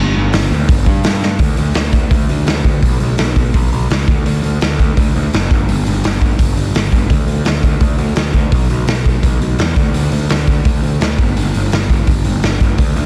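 Dry, dense and heavily limited, this rebellious, energetic punk rock excerpt at 169 BPM pairs a growly, overdriven picked electric bass, fuzzed and up front from 0.0 seconds, with a gritty, saturated garage drum kit of punchy kick, medium-tuned snare and hi-hat that enters at 0.3 seconds and throws a fill at 1.2 seconds before the music settles into its longer second section.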